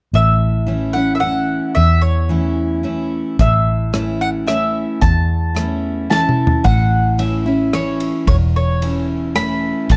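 Dry and close, the recording has a dark, warm production with little room sound, and it is cut from a longer honky-tonk and classic country piece in A major. It moves at 110 BPM in a straight 3/4 waltz time, carrying a down-home, nostalgic mood. A jumbo steel-string acoustic guitar sits up front with a bright, full-bodied picked accompaniment, while a vintage fingered electric bass, foam-muted and amped, gives a round, dusky low end. The mandolin carries the melody, its doubled strings sounding woody and forward in the mix. A natural country drum kit with a punchy kick and medium-tuned snare comes in at 3.4 seconds, played in a small room with hi-hat, ride cymbal, rim clicks and toms. A drum fill at 6.1 seconds leads into a new section at 6.7 seconds.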